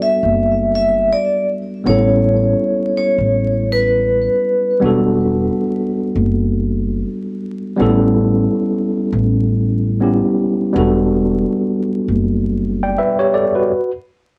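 Lo-fi hip hop with a nostalgic, hazy mood and a swung 4/4 feel, cut from a longer piece, moving between Em11 and A9 chords. A bright, metallic vibraphone struck with hard mallets carries the melody with ringing tone and fast motor vibrato until 4.8 seconds, while a worn, slightly out-of-tune tine electric piano, lightly overdriven through its built-in speakers, supplies the accompaniment and a woody, thumpy pizzicato upright bass anchors the low end. The home cassette recording adds vinyl crackle and moderate studio reverb before the track drops into a stop at 13.7 seconds.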